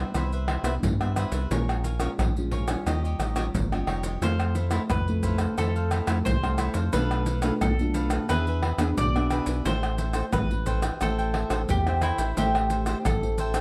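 A round, dark analog bass with ring-modulated sawtooth and sine tones sits up front in this lively, nostalgic samba and choro excerpt in A minor at 88 BPM, joined by a deep surdo, maracas, pandeiro and tamborim played with hard hands in a vintage, band-limited sound, a bright, crisp picked cavaquinho, a small thumb-plucked nylon-string guitar and, from 4.2 seconds, a woody double-stringed mandolin, all in light reverb with close, detailed miking.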